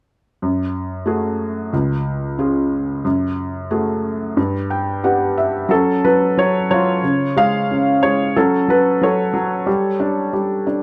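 A soft, mellow felt-muted upright piano sits up front and carries the melody from 0.4 s in this intimate, reflective folk fragment at 91 BPM in F# minor, its thin felt tone adding a brief fill at 4.4 s before a new section begins at 5.7 s, all within moderate studio reverb.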